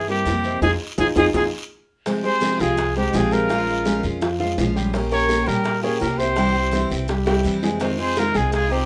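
A breathy trumpet, a dark grand piano and an upright bass open this short, danceable Cuban son and guajira cut at once, in F minor at a brisk 167 BPM in straight 4/4. The trumpet carries the melody up front, soft-attacked and whispered with vibrato and a vintage, intimate tone. Beneath it the piano spins mellow, short-sustained arpeggios, and the pizzicato bass sits woody and thumpy on its gut strings. A bright, picked steel-string guitar fills in the accompaniment alongside tight, high-tuned bongos in the background and a raspy, close guiro, with a band accent early on giving the groove a sultry push. At 2.3 seconds a warm chamber violin section enters with a bowed second line, lightly vibrato and intimate behind the trumpet, while a drum fill at 7.3 seconds leads into the closing Fm7 under moderate studio reverb.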